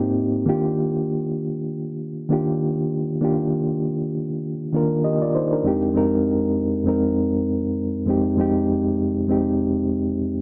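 Smooth and cinematic, this soul excerpt moves at 99 BPM in 4/4 with a gentle 16th-note swing, set in F dorian and tuned slightly low to A4 = 438 Hz. A lone electric piano carries the whole passage, its reedy, mellow tone clean and up front, colored by a fast tremolo heard through its built-in speakers. The keys span from F2 up to Eb5, settling on an Ebmaj9 chord early on before shifting to Fm9 at 5.6 seconds, where the second section begins. A moderate plate reverb with a long 3.5-second tail surrounds the instrument, and the production leans dark overall. Cut from a longer piece, the clip runs just over ten seconds and feels like a lush, unhurried interlude.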